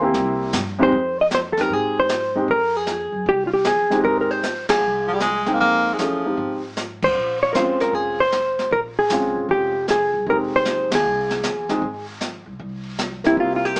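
Recorded as a band playing live in one room with moderate reverb and a small-speaker sound, this late-night, moody excerpt of small-group swing and bop is carried by an up-front piano with short sustain, a woody, thumpy pizzicato upright bass and a brushed drum kit with dark cymbals, a high-tuned snare and a punchy kick. A dark, clean, compressed hollow-body electric guitar takes the fingered melody from 0.8 seconds. A breathy baritone saxophone adds a smooth, subtone second line with light vibrato from 5.1 to 6.7 seconds, and the group punctuates the swinging minor-key changes with band accents.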